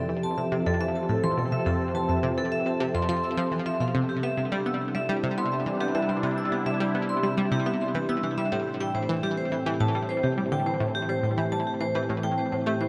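A sweeping, resonant pad, a dark, ringing vibraphone and a nasal, detuned analog pluck all sound together from the start of this excerpt of ambient, sequencer-driven space music in A minor, moving at 105 BPM in a straight 4/4 with an expansive, hypnotic mood. The pad holds evolving sustained chords with a slow attack and chorus, the vibraphone, struck with medium hard mallets, spins arpeggios through delay, and the bright pluck repeats a low riff colored by chorus, phaser and delay. A huge reverb with a 7.8-second tail bathes the mix as the harmony moves from Fmaj7 to C at 3.9 seconds and to Am7 at 8.5 seconds.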